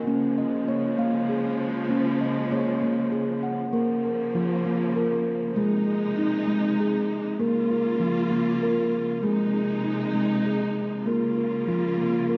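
Meditative and gentle, this world-flavoured piece for tuned percussion moves at an unhurried 66 BPM in a straight 6/8, set in Bb minor and tuned slightly low to A4 = 439 Hz. A steel tongue drum carries the arpeggios from start to finish, its round, pure, ringing notes struck with firm rubber mallets and placed bright and up front. Beneath it, a rich symphonic string section holds sustained bowed chords across the whole 12.4 seconds, close and lush with expressive vibrato, sitting lower in the mix than the drum. The harmony opens on Db before settling into a rocking alternation between Bb minor and Ab from 3.7 seconds onward. A wet echo chamber reverb with a 1.8-second tail surrounds the parts, and the dark production rolls off everything above 7.6 kHz. The recording is cut from a longer piece.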